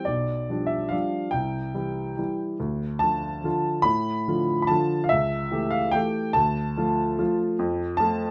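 A classical piano waltz in 3/4, this short fragment of a longer piece carries a nostalgic, bittersweet mood and moves with a flexible, rubato feel. A solo upright piano plays throughout, its woody, polished tone sitting up front with a long sustain and a present, close character. The part spans from B1 up to B5, giving the harmony a full reach from deep bass notes to high upper tones. The chords move from G7/B to C and Dm, then through A7/C# back to Dm before settling on F at 7.6 seconds. Light reverb adds a gentle sense of space around the instrument, and the tuning sits just above standard at A4 = 441 Hz.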